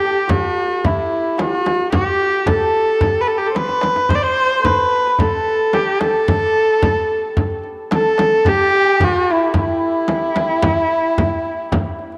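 A Persian modal ensemble piece cut from a longer work carries a longing, melancholic mood, led up front by a clear, boxy bowed kamancheh singing with vibrato and portamento through a tape echo, while a shimmering hammered santur rings a second line in the background, a close, dry frame drum struck with hard hands and a tight tombak heard in a small room keep the percussion going, a drum fill arrives at 3.6 seconds, and a wet spring reverb bathes the ensemble.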